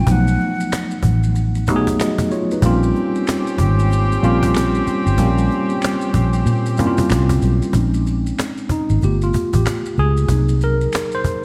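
A loping 94 BPM groove in 4/4 with a swung sixteenth feel drives this smooth, late-night R&B and neo-soul excerpt in Bb dorian, anchored by a dark, round, foam-muted electric bass up front, a snappy, close cajon played with soft hands, and faint, band-limited maracas and finger snaps. A breathy silver flute with tape echo opens the first 1.1 seconds over a worn, slightly out-of-tune tine electric piano heard through its built-in speakers, and a clear, punchy horn section with vibrato and tape echo adds stabs from 2.6 to 7.4 seconds. The electric piano then takes a solo from 7.7 seconds over Bbm11, G7 and Cm7b5 chords, all in a lightly reverberant space.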